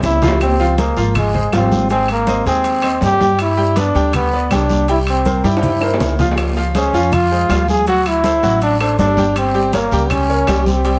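A drum fill opens this driving, fiery salsa excerpt at 161 BPM, with a punchy, up-front trombone carrying the melody under plate reverb over a brilliant, worn and slightly detuned upright piano and a pizzicato upright bass with steel strings. Ringing metal-shell timbales join at 0.3 seconds and woody claves at 0.4 seconds, sitting in the background with hard-handed congas and grainy maracas, while a raspy guiro adds texture. The chords move from Dbmaj7 through Abmaj7, G and C7, return to Dbmaj7, then go on to D7 and Gdim, and a second drum fill arrives at 5.3 seconds, all in a moderately reverberant studio sound.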